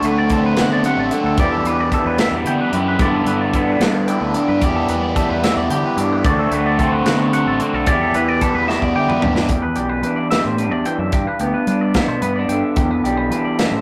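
A rough rehearsal-room recording with warm saturation and a short, small-room reverb frames this intricate, restless math rock and midwest emo cut in 6/8. Up front, a slightly broken-up, lo-fi guitar through a small old amp carries the accompaniment with spring reverb, while a bright, twangy, scooped clean guitar plays phased arpeggios up high, a growling, overdriven fingered bass holds the low end, and a modern studio kit adds a punchy kick, a medium-tuned snare, hi-hat and toms. A double-tracked cranked stack guitar plays an overdriven, phased riff until a drum fill at 8.7 seconds leads into a new section at 9.5 seconds, where the riff stops and the chords move toward G and Bm.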